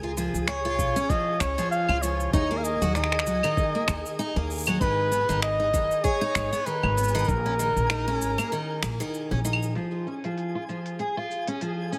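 A bright, shimmering twelve-string acoustic guitar plays octave-doubled arpeggios over woody pizzicato upright bass and a twinkling granular texture in the background to open this playful, delicate folktronica excerpt at a swung 97 BPM, soon joined by a tape-toned organic electronic kit of claves, finger snaps, crisp hi-hat and shaker and by a soft electronic kick, while a punchy flugelhorn with vibrato and digital delay carries the up-front melody from 0.5 s to 9.1 s, and the bass drops out at 9.7 s as the harmony returns to C# inside an echo-chamber reverb.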